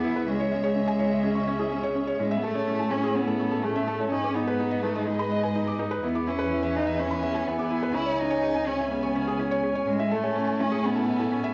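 A straight 4/4 pulse at 125 BPM carries this tender, hopeful piano-and-strings electronica, where a felt-muted upright piano with audible action noise plays an intimate, up-front riff, a woody solo cello with vibrato sings the dark-toned melody, a lush, bowed studio string section holds chords moving through C#m, Amaj7, G#m and E, a clear, biting cello section bows the bass with tube saturation, a very quiet, round pluck with chorus adds decaying arpeggios, and the cello, string section and piano carry a cassette-tape colour within a home-recorded mix bathed in wet studio reverb.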